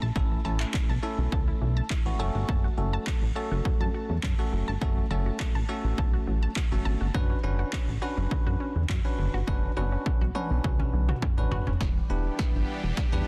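A straight 4/4 pulse at 103 BPM drives this confident dance-pop excerpt: a punchy, tape-warm analog drum machine of kick, snare, handclaps and toms sits up front beside a dark, glossy, chorused synth bass, both set against a bright, bell-like tine electric piano that carries phaser and sidechain pumping. A detuned sawtooth pluck traces arpeggios in the background with dub echo over A, F#m and Bmadd9/F#, until the harmony moves to Em7 at 11.8 seconds, where a lush supersaw pad with slow attack enters for a drum fill and build-up. The mix is dense and heavily limited, with little reverb and audible lossy compression artefacts.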